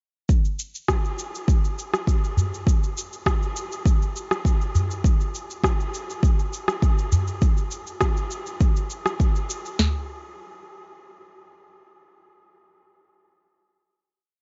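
A deep-kicked, sharp-snared afro-pop drum kit sits up front in this mystical downtempo piece, its electronic, produced sound working through kick, snare and floor tom in a straight 4/4 groove from 0.3 seconds. A layered electronic shaker and rim click adds an organic-feeling beat beneath it, while a small acoustic udu joins from 2.4 to 7.2 seconds with the live-room character of hand drums. Light reverb and digital ambience give the whole piece a warm, dusky sheen before it closes on a final hit at 9.8 seconds.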